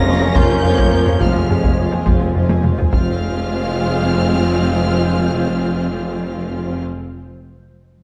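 Tense and futuristic, this short hybrid orchestral and electronic cue in 6/8 sets a lush violin melody high over a second violin line, with violas, cellos, double basses, tuba, trombones, French horns and a cloudy granular pad sustaining Bbm/F into Fm. A tight sequenced sawtooth synth arpeggio and a rubbery square-wave bass riff run from 0.1 to 2.9 seconds, while a muffled felt-muted upright piano adds soft texture until 3.0 seconds. Close, dry taiko drums with hard sticks are the loudest part, with a fill just before the synths drop out, all in a dark production on a moderate scoring-stage reverb.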